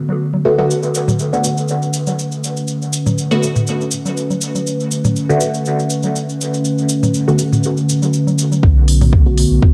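This hazy, nocturnal dub techno fragment at 121 BPM in B minor opens on a warbling, nostalgic pad holding a Bm7 chord with chorus and its own reverb, soon joined by analog-flavoured electronic congas and toms in dub echo, a muted, detuned sawtooth chord stab treated with phaser and echo, and a grainy, band-limited cabasa, all breathing with sidechain pumping where applied. At 8.6 seconds the stab's filter sweeps as a deep, up-front kick and a clean sine sub bass arrive, with smooth hi-hats slipping in at 8.9 seconds. The whole cut carries the lo-fi haze of a home cassette recording in a moderate room.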